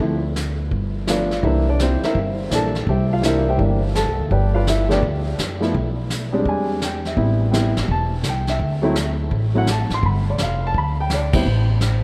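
A relaxed, playful swinging jazz piano trio fragment opens with an up-front grand piano of short sustain carrying the melody over woody, dark pizzicato upright bass and a vintage brush kit with dark cymbals and a punchy kick, all set in a vast cathedral-like reverb, with a band accent at 11.3 seconds just before the piano drops out at 11.7 seconds.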